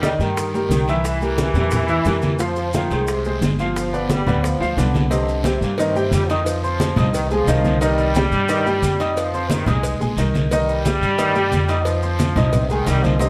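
Driving and danceable, this salsa excerpt in C minor moves at 178 BPM, with a clear, polished grand piano and a woody, thumpy pizzicato upright bass up front over a harmony that shifts at 5.1 seconds from a C7–Fm7–G7 turn to a Cmadd9 that then alternates between Cm and Fm7. A punchy, vintage-sounding trombone section with light vibrato plays a second line, while ringing low-tuned congas sit in the background and tight, high-tuned bongos and cowbell stay very quiet alongside a raspy guiro and grainy maracas. The whole band is heard from further back in a reverberant studio.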